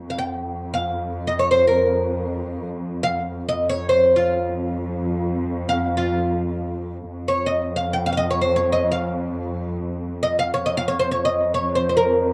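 In free time, this soulful, melancholic fragment of a Turkish makam ensemble piece sets a bright, woody fretless oud with double strings up front, its plectrum-plucked melody carrying a slapback echo, over a dark, veiled drone from a muted symphonic cello section bowed con sordino with light vibrato and soft attacks, all captured dry outdoors with little reverb.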